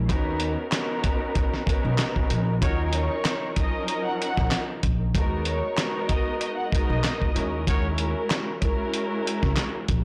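A swung boom-bap hip-hop groove at 95 BPM in 4/4 drives this dark, gritty cut from a longer piece in Eb minor. A dusty, sampler-style drum kit sits up front with a thumpy kick, medium-tuned snare, hi-hat and handclaps, compressed and tape-warm as if re-recorded in a large room. Beneath it, a pizzicato upright bass with a woody, growly tone and transformer saturation anchors the low end, while a lush bowed string section, filtered and run through cassette tape, carries the chords from Bmaj7/D# through Ebm7, Abm7/Eb and Gb7/Eb. A clear trumpet section punctuates with brief stabs at 2.6 and 7.7 seconds, and between them a bowed violin section with a smooth top sings the melody from 2.9 to 7.6 seconds, both filtered and touched with digital delay. The whole mix is blown-out and overdriven, set in a light, small-room reverb.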